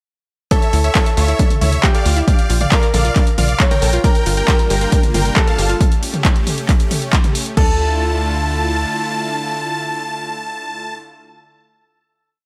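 A huge, detuned supersaw lead carries a euphoric riff in thirds and sixths with sidechain pumping and delay, alongside a brilliant baby grand piano playing its own repeating line with tape echo, in this soaring, bittersweet uplifting trance piece at 136 BPM in D harmonic minor. Beneath them, a punchy four-on-the-floor kick, a tape-warm analog drum machine with claps, hats, toms and crash, a tight off-beat sawtooth bass and a round, warbling pluck arpeggio in the background drive the drop over Dmadd9, Bbmaj7, Gm7 and A7, and a lush, slow-attack supersaw pad enters at 4.0 s. The drums stop at 7.7 s, and the lead, piano, bass and pad ring out on a final Dmadd9 chord in light reverb.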